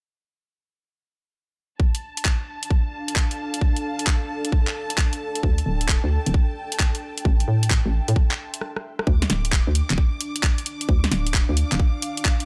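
A hollow, knocking FM bass with a punchy, bouncy attack and tube saturation enters at 5.4 seconds in this late-night, skippy two-step UK garage cut from a longer piece at 132 BPM in D minor, riding a tight electronic kick and a garage kit of cracking snare, handclaps, rim clicks and bright hats, while a smooth bowed violin section holds low-passed, sidechain-pumped chords and an ethereal, airy pad adds chorused, reverb-soaked sustain over Dm and Am7, all pausing for a drum fill at 8.6 seconds before the next section arrives at 9.1 seconds.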